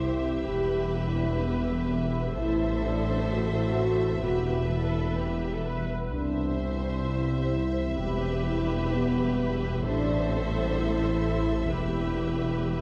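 A dark, tight French horn section holds sustained chords at the front of this relentless, tense hybrid orchestral and electronic film cue in E minor at 128 BPM, over a rumbling, detuned sawtooth bass, a woody double bass section, a very quiet cello section with portamento, a soft solo tuba and a deep, moody ambient pad that fades in at 0.3 seconds, while two bowed violin lines with vibrato and an expressive viola section fill the upper register. A barely audible electronic impact opens the passage, and the whole ensemble sits in a wet scoring-stage reverb heard from further back in the room.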